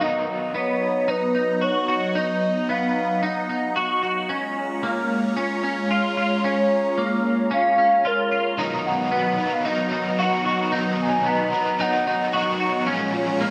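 A steady, straight 4/4 pulse at 112 BPM carries this floating, dreamy dream pop fragment in B lydian, cut from a longer piece, with the harmony shifting between Bmaj7 and A#m7. A warbling, nostalgic lead synth sings the melody until 12.7 seconds, its mellow, wave-folded tone shaded with vibrato, chorus and digital delay. Beneath it, a swirling, detuned sawtooth pad holds sustained chords up front throughout, evolving through phaser and chorus with a slow attack and a long release. A bright, twangy clean electric guitar picks compressed arpeggios the whole way, glistening with ensemble chorus and delay. An overdriven electric guitar flickers briefly at the start and returns at 8.6 seconds, its picked, scooped tone trembling with tremolo and analog chorus, and the whole track sits in a wet echo chamber reverb.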